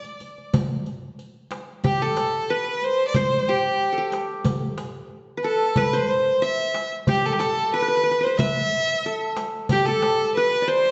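A soulful, longing Turkish makam ensemble piece in C makam rast, moving at a straight 92 BPM in 4/4 and cut from a longer work. A single bowed violin carries the melody up front with a clear, focused vibrato tone, over a crisp, close and dry metal-shell darbuka and a riq whose dark jingles sit in a live room. At 1.8 s a plectrum-plucked qanun with triple strings and a bright edge enters up front as a second line in the same range as the violin, while a recital hall reverb bathes the ensemble and the top end is capped at 7.9 kHz.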